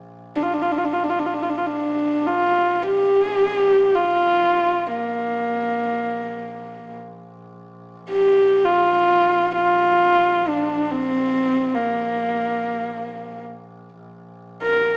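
A faint, bright bowed double bass drone opens this Mongolian folk passage, joined at 0.4 seconds by a single horsehead fiddle carrying the melody up front with a dark, husky, nasal voice, soft attacks, light vibrato and gliding portamento. The mood is vast and proud, with the fiddle's airy bow sounding close and boxy against the earthy bass in a moderate recital hall reverb, heard through a small speaker sound. The recording is cut from a longer piece.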